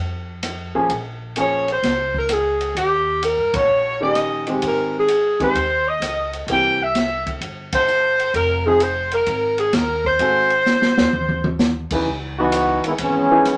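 A warm, vibrato-laden saxophone section carries the melody of this dramatic, sultry big band swing excerpt at 129 BPM, riding over a thumpy, woody upright bass, a bright, short-sustained upright piano and an open jazz kit with dark cymbals and a punchy kick, all in a small club-like reverb. The band hits accents at 3.5 and 7.6 seconds as the harmony moves from F through Bbm7 and Eb7 toward an Ab7b9, and a drum fill ends the saxophone line. A tight, clear trombone section then enters at 12.4 seconds for a solo over a C#m9 chord, backed by the bass, piano and drums.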